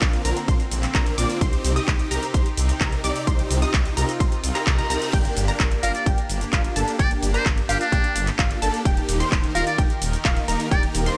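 A punchy, tape-warm electronic kick pulses up front at 129 BPM in straight 4/4 under a big-room dance kit of metallic hats, claps, shaker and cymbals, driving this emotional, anthemic festival progressive house excerpt in G minor through Bbadd9, Cm, Gm and Eb, where a menacing, beating detuned saw bass, huge phased supersaw chords, delayed unison pluck arpeggios and a bright chorused pad in the background all pump to the sidechain, a reverse cymbal rises at 4.7 seconds, and a buzzy, metal-muted trumpet enters at 5.8 seconds with a delayed jazz-style solo line and light vibrato, all set in light digital ambience.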